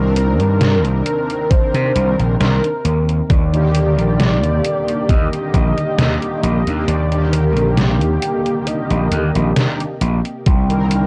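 A woozy, melancholic vaporwave piece cut from a longer work opens on a Cm9 chord, with round, detuned synth brass treated with analog chorus and cassette tape, a silky, very quiet string machine shimmering through a phaser, and a bright, punchy overdriven slap bass up front. A velvety, smooth synth lead carries the melody with vibrato, portamento and tape echo over an overdriven, detuned 8-bit drum machine playing hi-hat and snare. A thumpy, distorted electronic kick joins at 1.5 seconds, drops out from 6.9 to 10.5 seconds, and sits in a dry, saturated hardware sound with cassette tape coloring.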